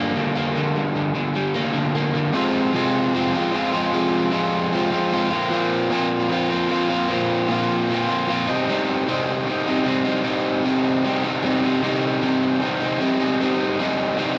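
Cool and bittersweet, this short rock piece, cut from a longer work, moves at 152 BPM in a straight 4/4 feel in C minor. A single crunchy overdriven electric guitar carries it alone from 0.0 to 14.4 s, picked and double-tracked, bright and up front, ranging from F2 to F4. The harmony passes from Gm to Fm at 2.3 s, then through Bbsus2 before settling on Cm. A moderate studio reverb gives the guitar a modest sense of space. The whole recording has the worn, warbling character of old cassette tape, with a warbly pitch drift running through it.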